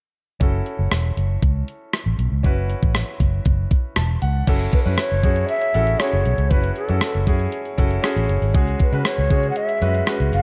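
Dramatic and nostalgic, this 1980s-style pop excerpt in F# minor moves at 118 BPM in a straight 4/4, built on a bright, polished concert grand piano accompaniment and a round, punchy, foam-muted fingered electric bass. A clean 12-bit drum machine sits up front with a thumpy kick, hi-hat, rim click and crash cymbal, and the piano plays a fill just before an airy, bamboo-toned shakuhachi enters with the melody at 4.7 seconds. The harmony rests on F#m7 before shifting to C#sus4 at 8.5 seconds, all within a dark production with light reverb.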